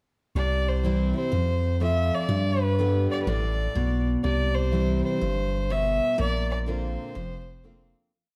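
Honky-tonk and classic country in C major at 124 BPM, with a swung 4/4 feel and a down-home, sunny mood, this short whole piece is a single verse that fades out from 6.2 to 8.1 seconds. A clear, biting fiddle with light vibrato takes a solo of answering blues licks, while a bright, full-bodied picked dreadnought acoustic guitar plays alternating bass and strum with bass runs, and a deep, punchy sine sub bass holds down a two-beat root-and-fifth line with walk-ups. The chords move from C through F and G back to C before landing on Bbadd9, all set in a dark production with moderate large-studio reverb.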